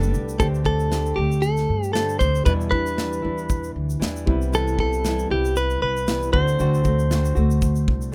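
Acoustic pop at 116 BPM in 4/4 with a light sixteenth-note swing, this carefree, heartfelt excerpt from a longer piece pairs a small, fingerpicked nylon-string guitar with a warm, smooth, vintage concert grand piano sitting in the background, over an up-front, woody, thumpy pizzicato upright bass and a polished, airy studio drum kit with punchy kick, medium-tuned snare and shaker, while a clean, compressed, direct-recorded electric guitar carries the picked melody from 0.4 seconds across a D7sus4, Em7, Cmaj7 and D7 progression, heard through close, detailed microphones with little reverb.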